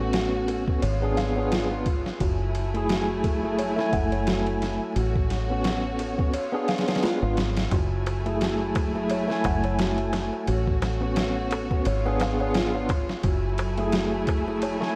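Gritty, overdriven sampler-style drums sit up front with a thumpy, pitched-down kick, a medium-tuned snare and ride cymbal, leading a hypnotic, melancholic trip hop groove at 87 BPM in F# minor with a 16th-note swing. A round, punchy, foam-muted fingered dub bass pushes forward beneath a clean tine electric piano with tremolo and tape echo, while a rich, bowed string section holds smooth, vibrato-laden chords through a cycle of A69, C#7b9 and F#m9. A delicate, tinkling music box with lo-fi sampler grit and tape echo plays arpeggios, a very quiet, close and dry clay darbuka joins at 7.7 seconds, and vinyl crackle with light small-room ambience runs under this excerpt of a longer piece.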